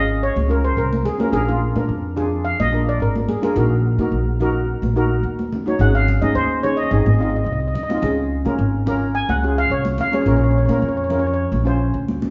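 A shimmering steel pan, played with soft rubber sticks, carries a mellow solo melody up front in this festive, bouncy calypso excerpt at 107 BPM in Db major, over a second, darker and smoother double-seconds pan comping on medium rubber sticks through chords such as Dbmaj7, Bb7 and Absus4, a woody, thumpy pizzicato upright bass, and ringing, high-tuned congas that enter at 0.4 s in the background, the band captured playing live in one room inside a large, wet studio reverb.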